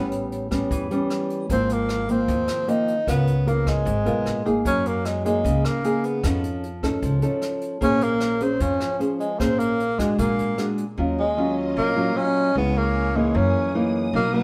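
Bossa nova, wistful and intimate, with a breathy, mellow tenor saxophone carrying the melody up front in scooped, lightly vibrato-tinged notes over thumb-plucked nylon-string guitar, woody pizzicato upright bass and a brushed drum kit with a boomy kick that stops at 10.9 seconds, just as a lush, bowed string section enters softly in the background at 11.0 seconds, all in a live-room feel with moderate reverb.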